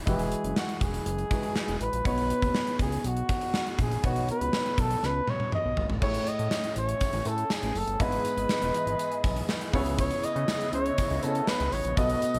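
Glossy and nostalgic, this 1980s-style pop excerpt in E major moves at 121 BPM, with an up-front flugelhorn carrying the melody with light vibrato and scooped notes through plate reverb and delay, over clear concert grand piano accompaniment, a fat, saturated sawtooth analog bass and a polished, gated drum kit with bright cymbals and a tight kick, whose fill at 5.0 seconds leads into a section at 6.0 seconds where a swirling, phased and chorused pad joins in the background alongside a distant, jingly tambourine.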